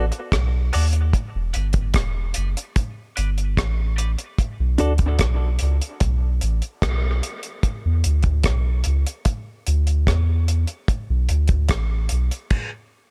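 A round, soft sub bass sits up front in this hypnotic dub reggae excerpt, joined by a dry, dark drum kit with a tight kick, hi-hat, rim click and crash cymbal, while a clean, compressed electric guitar moves through a filter sweep and dub echo until 4.9 seconds, the harmony shifting from Bm7 and Em7 through Bm and E5 and back to Bm7 before a stop at 12.5 seconds.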